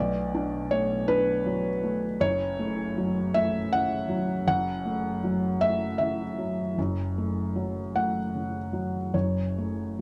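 A felt-muted upright piano plays solo for the full 10 seconds of this short fragment from a longer neoclassical minimalist piece, its tone soft, mellow, smooth and faintly vintage, placed up front. The mood is intimate and melancholic, moving at a slow 53 BPM in dotted quarters within a 6/8 metre, and the rubato feel lets the pulse breathe freely. The harmony settles on Bm7 at the start before shifting to F#m7 at 2.2 seconds, with the playing reaching from a deep F#1 up to F#5. A moderate small-room reverb of 0.6 seconds gives the piano a close sense of space, and the production as a whole leans dark. The instrument is tuned slightly high, to A4 = 441 Hz.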